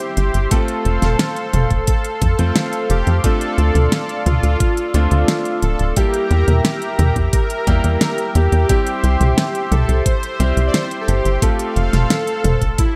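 A digital ambience surrounds this 13-second synthwave excerpt, driving and nocturnal at 88 BPM in 4/4, moving from C through F, Dm7 and Edim back to C and F. A knocking, tape-warm electronic kick from 0.5 seconds and a pop kit with fat snare, crisp hats and toms sit up front beside a tight, punchy sequencer bass of detuned sawtooth, square and triangle waves with a dark filter pluck and sidechain pumping. Above them a brassy, wave-folded analog pad holds chorused chords with the same pumping, a clear vintage concert grand adds delayed stabs, and a mellow unison supersaw carries the melody through digital delay.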